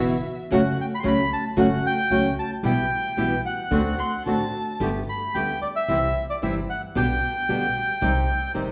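This tango excerpt is playful and passionate, moving at 112 BPM in 4/4 with a rubato feel and settling into G major at 4.8 s. The bandoneon carries the melody, its tone reedy, bright and full, close-miked and dry yet sitting in the background of the mix. A second bandoneon punctuates with stabs in a vintage, band-limited voice that stands up front. A small, fingerpicked nylon-string guitar provides the accompaniment, also up front, while a woody, pizzicato upright bass with steel strings anchors the low end. A single bowed violin, dark and close with vibrato, soft attacks and expressive portamento, offers a second line in brief touches, most notably from 4.0 s. The harmony drifts from F#m through Em/B and D7 into a brighter Gadd9, C and G/B before turning to Cm, all set in a wet recital-hall reverb with a layer of vinyl crackle.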